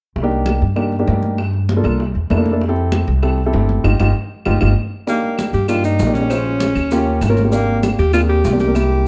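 This Afro-Cuban jazz excerpt, cut from a longer piece, feels sophisticated and fiery in a straight 4/4, with a dark production and light reverb. A baby grand piano comps up front with a mellow, intimate tone, audible action noise and short sustain, while a pizzicato upright bass, growly and woody on steel strings, sits just as close beneath it. Further back, bright, high-tuned congas played with hard hands, tight bongos heard in a large room and woody claves form the percussion bed as the harmony moves through Cm9, C13 and Fmaj7. The band hits an accent from 3.8 s and the piano slips in a short fill before a breathy alto saxophone takes the solo at 5.1 s, with vibrato, subtone, scooped notes and tape echo. Grainy maracas join at the same moment, and the chords shift through Ebmaj7/Bb, Bbm7 and Abmaj9#11.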